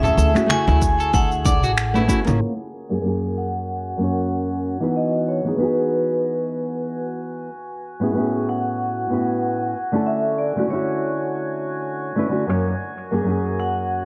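An up-front, thumb-plucked nylon-string guitar carries this sunny, warm sunset chillout cut from a longer piece, swinging lightly in 4/4 beneath a bright, ringing hard-mallet vibraphone melody with fast motor vibrato and delay, while a calm, glassy harmonics texture drifts with chorus and its own reverb throughout. In the opening bars, a woody, thumpy pizzicato upright bass, tape-warm electronic cabasa and finger snaps, background congas and bongos played with hard hands, and a slightly broken-up picked electric guitar with warbly pitch drift all sound together, joined by a deep layered electronic kick at 0.8 s, before these parts drop out by 2.4 s. From there a filter sweep runs over the dark, low-passed small-room mix as the chords move through lush major-ninth and add9 colours.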